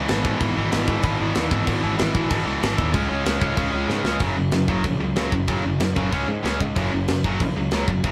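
This short cut from a longer punk rock piece opens with a tight, distorted guitar riff and a fuzz-laden picked electric bass striking together, joined a split second later by a tight acoustic drum kit of kick, snare and crash cymbal. The tempo is a driving 189 BPM in a straight 4/4, and the mood is rebellious and rowdy. The double-tracked guitar sits up front with a bright, biting edge, while the overdriven bass adds a growly low end beneath it. A drum fill at 3.9 seconds leads into a new section at 4.2 seconds, where the music settles into Gb major and moves through power chords on Gb, Db and back to Gb. The band sounds as if playing live in one room, with a light reverb and a mid-forward kit featuring a medium-tuned snare and a tight kick.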